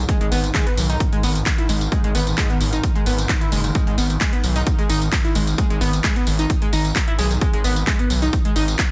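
A straight 4/4 pulse drives this short cut of industrial, hypnotic peak-time techno, anchored by an overdriven, up-front electronic kick and a layered drum kit of handclaps, metallic hi-hats and tambourine in small room ambience, with the hats and percussion pumping under sidechain. Beneath them, a gritty, distorted synth bass with oscillator sync and a resonant filter sweep pumps up front in the mix, while a screaming, guitar-like saturated lead with vibrato, lush chorus and digital delay carries the riff. A detuned, granular drone swarms in the background through its own reverb, adding tension to the dense, heavily limited master.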